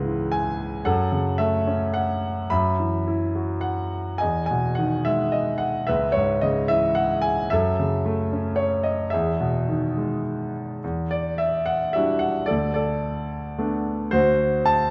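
Relaxed and sunny, this short stretch cut from a longer piece is lyrical classical solo piano in a three-beat metre, with uneven beats and an unhurried, rubato feel. A grand piano with a smooth, vintage tone sits up front, ranging from C#2 to B5 and playing alone throughout the full 14.9 seconds. Its harmony drifts through mellow seventh chords such as C#m7, F#m7 and Emaj7 before turning darker at 10.8 seconds, where the music moves into its second section with an Em9 and settles toward a D7. A moderate recital hall reverb gives the notes a gentle bloom. The production is dark and warm, with a faint mains hum beneath the playing.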